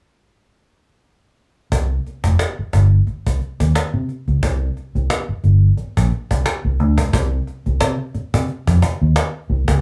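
Cool and sly, this funk excerpt moves at 89 BPM in 4/4 with a light swing on the sixteenths, opening with a drum fill from 0.4 seconds before the groove settles in at 1.7 seconds. A dark, round, foam-muted vintage electric bass sits punchy and up front, ranging from F1 to C3, alongside a snappy cajon with snares played with hard hands. The two sound like a band playing live together in a small room, with moderate studio ambience.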